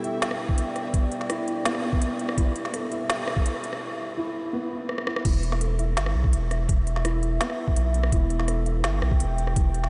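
A dreamy, reverb-soaked mix with a long, cavernous tail and a softened top end frames this cinematic, dark half-time drum and bass fragment, cut from a longer piece. A deep, detuned analog pad holds sustained, mellow chords with chorus and sidechain pumping, while a felt-muted upright piano plays boxy, intimate arpeggios through a low-pass filter and delay. A reversed, granular texture drifts very quietly under them until 3.8 s, as an organic electronic kit with a woody snare and crisp hats and a gritty, pitched-down kick both add overdriven weight. The build-up gives way to a brief break and a drum fill before the drop at 5.2 s, where a thick, saturated sine sub bass enters up front alongside the thumpy kick.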